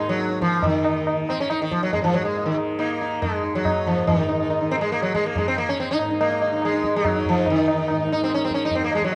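A mellow, round sitar sits up front, its plectrum-plucked lines buzzing with sympathetic strings and trailed by tape echo over a softly plucked, shimmering tanpura drone in the background. This solemn, introspective Hindustani piece is in raga Bageshri on Eb, tuned to A4 = 439 Hz, and runs at 141 BPM in 4/4. A high-tuned, short-ringing tabla enters at 0.2 seconds, close and dry, as the tempo steadily speeds up through a new section at 4.1 seconds, all heard through moderate studio reverb and the warbly pitch drift of worn old cassette tape in this brief cut from a longer performance.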